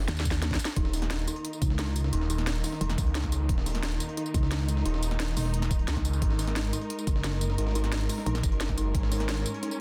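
A dense, heavily limited mix in digital ambience carries this dark, mechanical excerpt of technical drum and bass at 176 BPM in Eb phrygian, where a drum fill opens on an overdriven drum and bass kit with cracking snare and bright hats, a knocking overdriven electronic kick, and a very quiet, gritty, pitched-up breakbeat sampler kit, under two up-front basses, a swirling, thick phased saw bass with sidechain pumping and a heavy, pulsing pluck wobble bass with chorus, while from 0.8 seconds a woody, lush bowed string section holds sustained chords and an eerie, inharmonic FM bell arpeggiates on Eb4 through chorus and digital delay, moving from Eb5 to Absus2 at 6.2 seconds.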